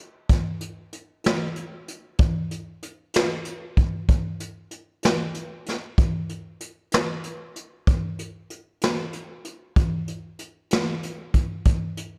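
Soulful and brooding, this short blues excerpt moves at 63 BPM in a slow 12/8 with a straight feel, carried entirely by a vintage brush drum kit playing from 0.3 to 12.1 seconds. Hi-hat, punchy kick and a medium-tuned snare played with brushes sit up front with a natural small-room character and a rolled-off top. Light reverb and a dark production give the whole passage a dusky, intimate air.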